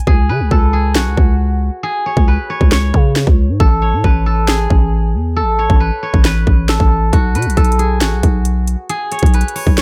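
This brooding, eerie trap hip hop excerpt moves at 136 BPM in 4/4 with a half-time feel, tuned slightly flat to A4 = 438 Hz. A steel-string zither carries the melody between F#4 and C#6; it is acoustic and played with fingerpicks, and its silvery, ringing tone is softened by a low-pass filter that keeps it mellow and set back beneath the drums. The electronic trap kit sits up front with a hard-clipped kick, a sharp snare and metallic hi-hats. From 0.1 seconds a growling 808-style bass joins just as prominently, its buzzy sine tone striking with a fast attack and decaying low between A1 and C#3. The harmony moves from a C#5 chord to Asus2 at 3.6 seconds and Bsus2 at 7.1 seconds, with a break running up to that last change. The dry mix has little reverb, which keeps the dark mood close and tense.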